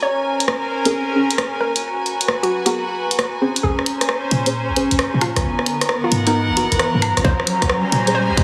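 A hollow, bouncy square-wave pluck carries the melody in this soulful, moody fragment of two-step UK garage, its detuned, mellow tone trailing dub echo and chorus over a swung 133 BPM groove in Bb minor. Beneath it, a vintage analog pad warbles in the background and a clear string section floats with a soft, bowed attack, both pumping with sidechain compression as the harmony moves between Bbm9 and Abm9. A deep, dark chord stab, wave-folded and coloured by phaser and dub echo, gets a filter sweep through the opening, while an overdriven garage kit of hi-hat, rim click and woodblock sits up front with a small room around it. At 3.6 seconds a punchy, short 808-style bass arrives and the track begins to build, with an electronic riser joining at 5.0 seconds. A tight, overdriven electronic kick finally lands at 7.2 seconds, and a lush hall reverb and heavily compressed, radio-like finish glue the mix together.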